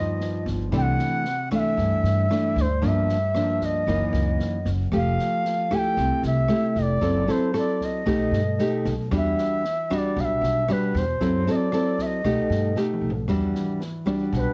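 Wistful and smooth, this short bossa nova cut in E minor at 115 BPM sets an airy, crisp bansuri melody with vibrato, full-bodied fingerpicked nylon-string guitar, growly pizzicato upright bass and a dark, rolled-off jazz kit of kick, rim click, snare and toms in a small, lightly reverberant room with a cassette-tape grain, with a drum fill at 12.8 seconds leading into a brief bansuri solo over Em9 at 13.3 seconds.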